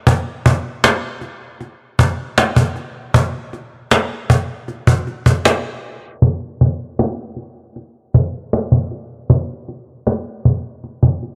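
A low-pass filter gives this short fragment a muted, band-limited sound, set in a small room with light reverb. It is a smooth, dreamy R&B groove in a straight 4/4 feel, carried entirely by a cajon. The cajon sits up front, with a woody, vintage acoustic tone and faint snares. Soft hands shape the playing, keeping it gentle. It starts at 0.1 seconds and runs through two sections, the second beginning around 6.2 seconds. It stops at 11.3 seconds, as the clip is cut from a longer piece.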